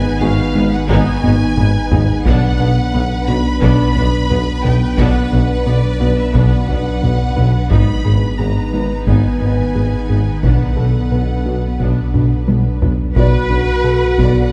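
Brooding and futuristic, this cinematic hybrid of orchestral and electronic film score sets lush, vibrato-rich violin sections on the melody and a second line over a background viola section with portamento, a very quiet cello section, woody double basses, a mellow, punchy French horn section and a clear tuba, blended with a warbling, detuned bowed-like synth drone, a round analog bass riff, a deep sub bass, soft chorused pluck arpeggios and a faint, present grand piano texture, while hard-stick taiko drums enter at 0.9 seconds with fills at 1.2 and 12.1 seconds, the orchestra sitting in a wet, dark scoring-stage reverb.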